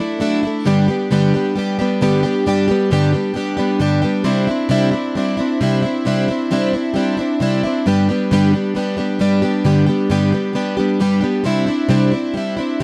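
Nostalgic and warm, this rock passage cut from a longer piece features a lone plugged-in twelve-string acoustic guitar, picked and up front, whose bright, shimmering, octave-doubled parlour tone and audible finger squeak move through Dadd9, G and Cadd9 chords across 12.8 seconds in a dry, close 1970s-style studio sound with small room ambience.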